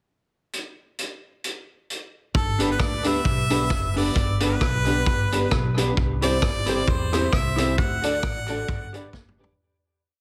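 A clear harmonica with light vibrato and scooped notes leads this upbeat, joyful ska piece, playing motif-based call phrases soaked in dub echo. A vintage drum kit, up front with a punchy kick, rolled-off highs and a side-stick backbeat, plays a pickup bar alone from 0.5 seconds. Then woody pizzicato upright bass walks in with slides, joined by dark, clean off-beat guitar chops with chorus and dub echo, and boxy upright piano chops that also carry dub echo. The swung groove moves through G, C and D in a heavily compressed, radio-like sound with moderate studio ambience, fading out from 7.8 seconds as the drums close on a fill.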